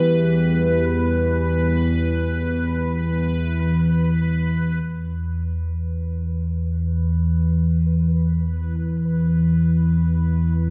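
Opening on an up-front, warbling analog drone of evolving wave-folded sawtooth and pulse tones, this dark, cavernous ambient excerpt in free time sets a deep, detuned pad with phaser in the background until 4.8 seconds while a faint, bright, bubbling texture of resonant random filter steps with built-in reverb persists throughout in a lightly reverberant space.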